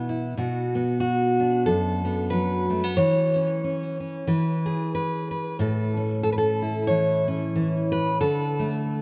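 A lightly swung 4/4 lilt carries this peaceful, pastoral folk excerpt, in which a solo fingerpicked steel-string acoustic guitar, full-bodied and up front with audible finger squeak and delay, moves through Bm, C#m/E, E and A before settling on D5 at 8.2 seconds, all bathed in a lush, dreamy hall reverb.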